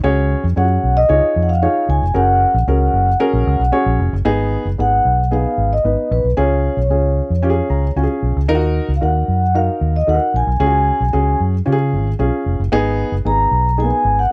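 Danceable and warm, this uptempo 1960s-style soul excerpt moves at 113 BPM in a straight 4/4, tuned slightly below standard pitch. A vintage muted fingered electric bass sits up front with a round, punchy, foam-muted tone, anchoring the groove throughout. A dark baby grand piano supplies mellow, intimate accompaniment with short sustain and audible action noise, adding a brief fill around 7.4 seconds. The vibraphone, played with soft mallets and a slow motor vibrato, carries the melody from 0.6 seconds with a ringing, band-limited shimmer. Harmonies shift from C#sus4 and F#add9 into a passage built on G#m, C# and D#m, all captured in a dry sound with little reverb.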